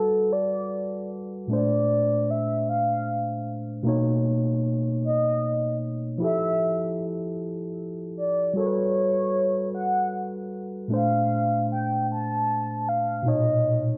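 A round, horn-like synth lead with a warbling chorus, vibrato and slapback echo sings a tender melody under a filter sweep, over a gritty, overdriven tine electric piano played through a combo amp, in this slow 6/8 R&B fragment at 51 BPM, tuned to A4 = 435 Hz, which drifts through lush major-ninth chords from Gmaj9 to Bbmaj9, Bmaj9 and Fmaj9 inside a moderate echo-chamber reverb and a soft low-pass haze.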